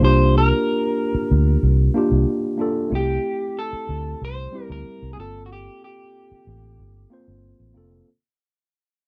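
At 93 BPM in a straight 4/4, this short excerpt cut from a longer piece settles into a lush, 1970s-style soul groove in G dorian, silky and smooth in mood, with a fade-out running across its full 8.1 seconds. A vintage muted fingered electric bass sits at the bottom and well forward, its dark, round, foam-muted tone punchy and amped. Above it, a tine electric piano carries the accompaniment, sounding worn and slightly out of tune yet clean and direct, placed up front in the mix. An electric guitar through a small old amp plays the melody, its picked tone warm and slightly broken-up, and it drops out at 7.1 seconds while the piano and bass carry on. The harmony moves from C9sus4 to Am7/C at 2.9 seconds and on to Gm11, all captured in a dry, close 1970s-style studio sound with light reverb.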